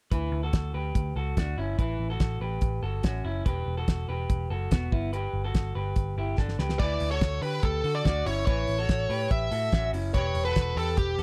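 A cloth-damped, thuddy drum kit with a fat snare and dark cymbals opens this jangly indie pop excerpt at 144 BPM in D major, joined from the start by a round, foam-muted picked electric bass and a twangy, slightly broken-up electric guitar playing arpeggios through a small old amp with slapback echo over chords moving from Dsus2 through A, Emadd9 and Gadd9. After a drum fill, a bluesy overdriven lead guitar enters up front at 6.8 seconds with a distorted melody and its own slapback echo. The mood is youthful and bright, captured in a dry, close 1970s-style studio sound with small room ambience.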